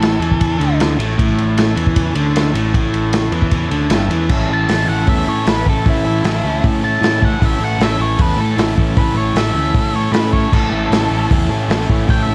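Swaggering and raw, this 154 BPM garage rock clip in A major rides a double-tracked, overdriven electric guitar riff over a growling, bright picked bass with tube-saturated overdrive and a muffled, lo-fi vintage drum kit with a punchy kick and dark cymbals, while a buzzy combo organ holds sustained chords in the background and a dark octave-fuzz lead guitar, heard briefly at the start, returns at 4.5 seconds for a solo washed in plate reverb.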